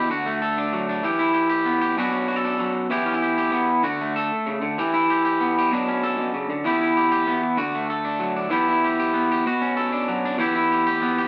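A bright, slightly broken-up electric guitar through a small old amp plays a twangy, compressed solo line up front from B2 to A4, cycling through D, Em and Bmadd9 in a sunny, danceable highlife groove at 128 BPM in 12/8, with a lo-fi, live-in-one-room sound, moderate studio reverb and the top end rolled off above 7.4 kHz.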